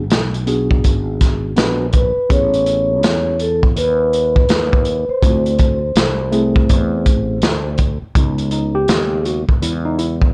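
A worn, slightly out-of-tune tine electric piano and a growly, punchy fretless bass open this smoky, mellow jazz-hop excerpt in C# minor, joined at once by a crunchy, saturated breakbeat kit with a tight kick and rolled-off top, swinging at 82 BPM over a rootless E7, then Amaj9 and D9 chords. From 1.9 s to 7.8 s a soft-mallet vibraphone carries a ringing, metallic melody with its motor off, before the electric piano takes a solo over C#m9 from 8.2 s. The sound is dry and gritty, with the drums sitting up front.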